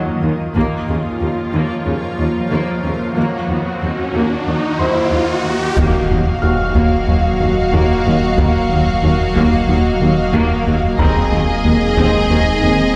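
In a straight 4/4 at 92 BPM, this relentless, futuristic excerpt of a hybrid orchestral and electronic film score in Eb dorian opens on a cloudy, evolving granular pad with its own reverb, a distant viola section, a lush cello section holding Eb2, and a felt-muted upright piano with digital delay that drops out and returns at 4.8 seconds, while very quiet taiko hit with hard sticks and an electronic riser climbs toward an impact at 5.8 seconds. At that point the full texture arrives: a smooth symphonic violin melody over a focused chamber violin second line, mellow French horn chords, a dark tuba, a very quiet double bass section, a round, nasal analog bass riff and a deep sine sub bass, with the taiko returning as the harmony moves from Ebmadd9 to Ab/Eb at 11.0 seconds. The whole is heard from further back on a wet scoring stage with a 1.7-second reverb tail.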